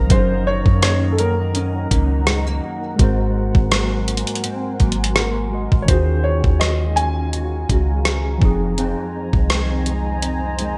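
Moody and sensual, this contemporary R&B excerpt at 83 BPM with a light 16th-note swing sets an intimate baby grand piano melody, touched by analog chorus and delay and ending at 8.4 s, over a mellow tine electric piano, a thumb-plucked nylon-string guitar playing arpeggios with ensemble chorus, a dark detuned ambient pad with slow attack, a soft, round 808-style bass, and an up-front, thumpy gated 80s digital drum machine with hi-hat, kick and rim click, all wrapped in bright 1980s-style digital production with a faint mains hum.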